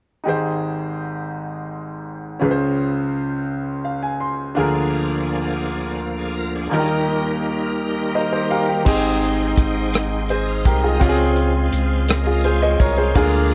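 A brilliant, up-front grand piano opens this slow, jubilant gospel excerpt in 6/8 at 56 BPM in Ab major, moving through Abmaj7, Dbmaj7, Bb7/D and Eb with short fills around 3.5 and 7.8 seconds. A full, shouting tonewheel organ joins at 4.6 seconds with sustained chords through a slow rotary speaker and chorus vibrato, then takes its own fill near the end. At 8.9 seconds a round sine sub bass and a dry, dark soul drum kit with a tight kick, rim clicks, hi-hat and crash enter, all under light reverb and the warbling pitch drift of worn cassette tape.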